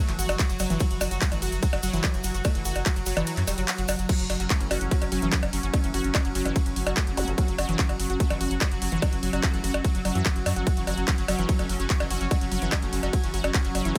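A bright, pulsing gated texture of detuned, chorused chords opens this psychedelic trance excerpt, pumping in time at 146 BPM in a straight 4/4 over a single F#5 chord, tuned slightly low to A4 = 438 Hz. Almost at once a lush, punchy unison sawtooth pluck takes up a driving riff with tape echo. A round, deep analog bass sits up front, and an overdriven, tight electronic kick leads the mix. A techno kit with tape-warm hats, handclaps, ride and crash cymbals and percussion blips fills out the groove, and a grainy, distant tube shaker is briefly heard in the background. The kick drops out from 3.3 to 4.1 seconds before the drop returns. A cloudy, evolving granular pad with a moving notch drifts in behind at 5.2 seconds, and a small electronic zap flickers at 7.2 seconds, all set in a light reverb.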